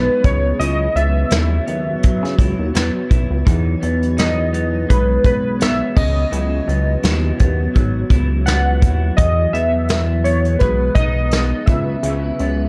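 Indie and bedroom pop at 84 BPM with a light 16th-note swing, laid-back and dreamy, drifting on C#m11 before moving to Emaj7 at 9.2 seconds and returning at 11.7. Warbly, detuned lo-fi synth keys carry a nostalgic melody, while a bright, twangy, slightly broken-up electric guitar through a small old amp accompanies with lush chorus and vibrato. A glossy, chorused synth bass and a roomy brush drum kit with a tight kick sit up front, and a cloudy, evolving granular pad hangs in the background, all within a dark production touched by light reverb.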